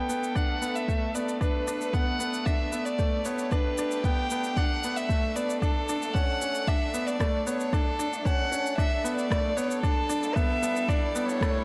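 Piano and strings electronica at 114 BPM in 4/4 with a straight feel, this melancholic, moving passage is cut from a longer piece and plays as a build-up throughout, moving through Bm7, Gmaj7, Dmaj7 and A7sus4. Up front, a solo violin carries the melody with a dark, intimate, airy bow, light vibrato and a soft attack, softened by a low-pass filter and trailed by delay. Beneath it, a string quartet holds sustained chords with a rich, reedy gut-string tone in a period chamber style, one player per line, pumping against the kick while a filter sweep runs across its whole length. A clear, present grand piano repeats a riff in the middle register, its notes echoed by delay. A tape-warm electronic kit of rim click, shaker and toms enters at 0.1 seconds, joined at 0.4 seconds by the overdriven, deep, layered electronic kick sitting up front, all set in a moderate scoring stage reverb with studio ambience and some lossy compression artefacts.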